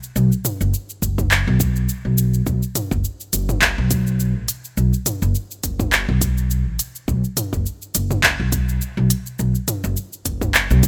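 A dry, rough home-demo sound frames this short cut from a longer organic downtempo piece, with only a small room's ambience around the drums. At 104 BPM in 4/4, with a light 55% swing on the sixteenths and tuning set to A4 = 444 Hz, the groove feels earthy and hypnotic. A layered, produced deep house drum kit opens at 0.0 s, up front with smooth hats alongside handclaps, shaker and toms. An upright bass enters at 0.2 s, played pizzicato on steel strings in a low register from F#1 to B1; its woody, growly tone sits forward in the mix and pumps under sidechain compression. At 1.0 s a deep electronic kick joins beneath the kit, quieter than the other parts. The whole passage holds to a single section through to 10.9 s.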